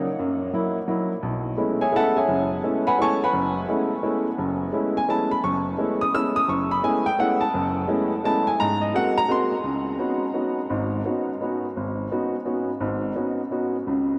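A solo upright piano opens this brief jazz waltz fragment in 3/4 at 171 BPM, its woody, natural tone sitting up front with long sustain as it ranges from deep bass to high treble under a swung eighth-note feel. Chords such as Gb7, B13sus4 and G#9 give the searching, open mood a restless color before a new passage arrives at 9.6 seconds on Db9sus4. A huge reverb with an 8.3-second tail places the instrument in a vast, echoing space, and the piano is tuned slightly low at A4 = 437 Hz.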